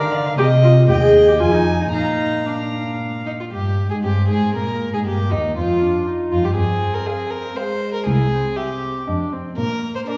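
All four bowed strings of a period-style quartet enter together at the start of this quick, cheerful classical-period movement, cut from a longer piece and moving at 118 BPM in a lively three-beat metre. The first violin carries the melody with a nasal, somewhat distant tone, while the second violin adds a close, rich second line. Beneath them, the viola supplies warm accompaniment, and the cello sits up front with a dark, smooth-topped bass. Every player uses gut strings, giving the ensemble a reedy colour. The harmony opens in C minor through F minor 7 to B-flat, then a new section at 3.5 seconds moves through E-flat and F minor before arriving on C and closing on B-flat, with the cello dropping out at 10.0 seconds just before the upper strings finish at 10.2. The quartet is heard from further back in a recital hall, with a wet 1.6-second reverb blending with a small-room ambience.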